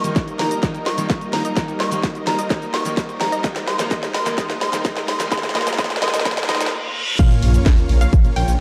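A dark, warm production with moderate room reverb carries this powerful, euphoric festival progressive house excerpt through a build-up where a pure FM synth bell melody with chorus and delay floats over a bright picked steel-string acoustic guitar, a very quiet warbling unison pad, wave-folded unison pluck arpeggios and huge background supersaw chords under a filter sweep, the guitar, pluck and supersaws pumping with sidechain, all propelled by a punchy up-front electronic kick and a house drum kit with cracking snare, hi-hat, shaker, crash and a drum fill, until a reverse cymbal at 6.3 s and faint riser effects lead into the drop at 7.2 s, where a thick, menacing, saturated detuned saw bass enters with an impact and sub drop.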